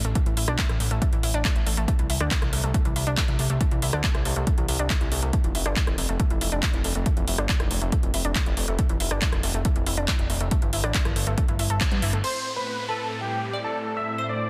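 A fat, detuned analog bass pumps up front through this bittersweet, driving uplifting trance excerpt in A minor at 139 BPM, joined by a punchy electronic kick, a layered dance kit with metallic hats, handclaps, rim clicks and crash, and nasal, chorused analog pluck arpeggios with tape echo, until at 12.2 s a huge compressed supersaw melody arrives under a filter sweep, alongside a very quiet, brilliant baby grand piano, a crystalline wavetable pluck with dub echo, a lush, warbling unison pad and an electronic downlifter, the whole piece sitting in a dense, heavily limited master with light reverb.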